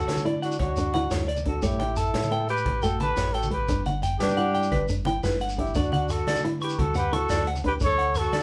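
A live-in-one-room sound with a damp, reverberant studio ambience wraps this short, danceable highlife guitar-band cut in a straight 12/8 feel. Up front, a dark, whispered trumpet carries the melody with vibrato, scooped notes and a soft attack, while a clear, subtoned alto saxophone with jazz-style vibrato shadows it on a second line. A clean semi-hollow electric guitar picks warm arpeggios high above, its pitch drifting with a warbly wobble, and a thumb-plucked flamenco guitar adds acoustic accompaniment from 0.3 s. Underneath, a deep, round dub-style fingered bass anchors the harmony, joined by a grainy, saturated shekere and, from 0.1 s, a natural vintage drum kit with a punchy kick and medium-tuned snare plus thin-skinned congas set in the background. The harmony moves through Dmaj7, A7 and Gmaj7 before returning to Dmaj7 at 5.8 s, giving the passage a warm glow.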